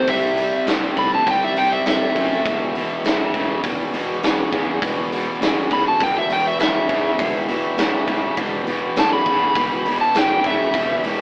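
A straight, steady four-four groove drives this gritty, brooding blend of blues rock power trio and southern rock, cut from a longer piece. Up front, a big acoustic rock kit with a punchy kick, a medium-tuned snare and hi-hat sounds natural and roomy. Beside it, a cranked stack guitar, picked and double-tracked with a bright, crunching tone, lays down a low riff over a move from C to E minor. Soloing on top throughout, a dark slide guitar, played with the fingers, carries the melody in a high register. Sitting in the background, a fuzzy, growly fingered bass holds the low end. At 7.2 seconds a very quiet tonewheel organ joins with full, thick sustained chords, gritty and percussive with key click and a stopped rotary speaker. The band plays live in one stone room with moderate reverb, and the whole mix carries an AM radio character.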